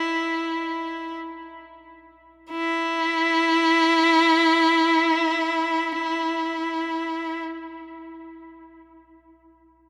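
A rich, smooth violin sits up front as the sole voice in this short classical fragment, a baroque-style suite movement for unaccompanied violin cut from a longer piece. A single player bows with even vibrato around E4, tuned slightly low to A4 = 439 Hz, and the mood is radiant and serene. The music moves in free time, slowing down across the opening 2.5 seconds before a second section carries on until the violin stops at 7.4 seconds. The sound is bathed in a cathedral reverb with a 5.2-second tail, placing the instrument in a vast, echoing space, while a faint mains hum lingers underneath.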